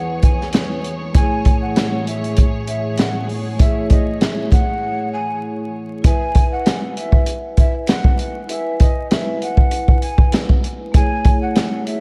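A swung boom-bap groove in 4/4 rides on a vintage drum kit that enters at 0.2 s, its punchy kick, medium-tuned snare and hi-hat sitting up front with 12-bit sampler grit and a rolled-off top. This nostalgic hip-hop cut, taken from a longer piece, moves through a short break at 4.8 s. A breathy jazz flute carries the melody from a hollow, distant spot, its chiff and vibrato trailed by a diffuse ambient delay. Soft-mallet vibraphone rings beneath it with a slow motor vibrato and a cassette-tape tint, while a lush, bowed string section holds sustained chords until 6.0 s. The mix is dreamy and soaked in plate reverb, with vinyl crackle lending it a warm, worn feel.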